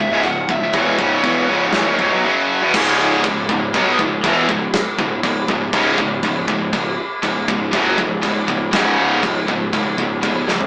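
Aggressive and relentless, this heavy metal excerpt in C# minor at 120 BPM opens with a dark, smooth overdriven lead guitar melody over two bright picked rhythm guitars and a growly fuzz bass, with an up-front studio drum kit of tight kick, medium-tuned snare, toms, crash and china joining at 0.2 s, before a half-time feel takes over at 2.7 s as a very quiet double-tracked high-gain guitar adds to the riff, all heard in a rough rehearsal-room recording with small-speaker sound and a stone room reverb, ending on a drum fill at 10.5 s.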